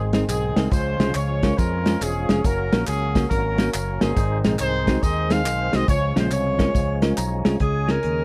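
Soulful and jubilant, this uptempo gospel cut swings in 4/4, with a present, up-front horn section carrying the melody over bell-like tine electric piano, a thick tonewheel organ with key click and overdrive churning through a fast rotary speaker, and a punchy fingered electric bass. A dark, smooth soul drum kit with a tight kick drives the groove alongside close, dry tambourine, egg shaker and group handclaps, while the electric piano slips in a fill at 7.0 seconds. At 7.6 seconds a breathy, subtone alto saxophone with vibrato takes over the melody as the harmony settles on a Dbmaj7, all captured in a dry, close 1970s-style studio sound.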